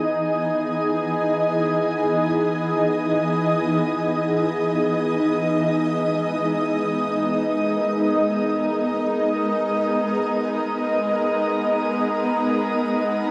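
A lone shimmering pad opens the recording at 0.0 s, drifting in free time with a weightless, luminous mood. Built from detuned sine voices in unison with an octave-up shimmer, it has a slow attack, long sustain and long release, and a granular, ethereal grain sits inside its otherwise dark, up-front tone. Chorus, built-in reverb and tape echo thicken the pad as it spans E3 to D#5, and a wet shimmer reverb with an 8.0-second tail wraps the whole texture. The harmony rests on Emaj7 before moving to G#madd9 at 5.5 s, and the top end is rolled off above 10.9 kHz, keeping the glow soft rather than bright. The passage is cut from a longer piece, running 13.3 seconds in total.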